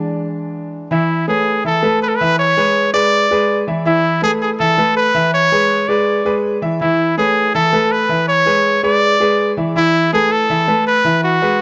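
Festive and danceable, this short latin excerpt moves at a brisk 163 BPM in a straight 4/4 feel, centred in A major. A concert grand piano opens alone at 0.0 seconds with an open, clear tone and deep bass, laying down the accompaniment over chords that alternate between E7 and shades of A such as Aadd9 and Asus2. At 0.9 seconds a solo trumpet enters up front with the melody, its punchy attack and smooth top lending it a pop-style sheen. Both parts sit forward in the mix, the trumpet slightly louder than the piano, and they carry through to the cut at 11.6 seconds. Light reverb surrounds a dark, warm production that keeps the clear lead grounded.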